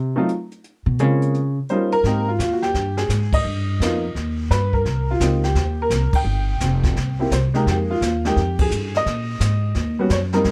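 Jazz piano trio swinging at 171 BPM in Ab major, opening with a growly, woody pizzicato upright bass solo that runs until 2.0 seconds, as a boxy, up-front upright piano enters at 0.2 seconds to carry the melody and a distant, roomy brush kit with dark cymbals and a boomy kick joins at 0.3 seconds, the band hitting accents at 3.3, 6.1 and 8.5 seconds in this dry, warm excerpt cut from a longer piece.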